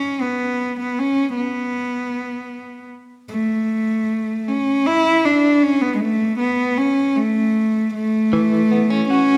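Acoustic folk-pop ballad in a slow 6/8 at 52 BPM, heartfelt and hopeful, where a single intimate cello carries the melody up front from the start with light vibrato, a soft attack and an airy sul tasto bow, joined at 8.3 s by a compressed, clean electric guitar recorded direct that slips in beneath it with tremolo-tinged picked arpeggios on an F#m7, all set in the lingering reverb of a recital hall in this short excerpt cut from a longer piece.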